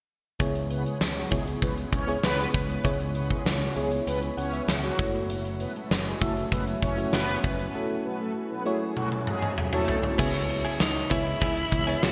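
A huge arena drum kit with gated reverb, a fat snare and a punchy kick drives this nostalgic, urgent 1980s-style pop passage, over a warbling FM electric piano with tremolo and phaser, a bright picked electric bass, mellow detuned synth brass stabs and an ethereal, airy pad entering at 2.5 s, set in a lush hall, before a drum fill at 9.0 s leads into a clean, direct-recorded electric guitar riff at 10.2 s and a raspy, up-front alto saxophone melody at 10.8 s.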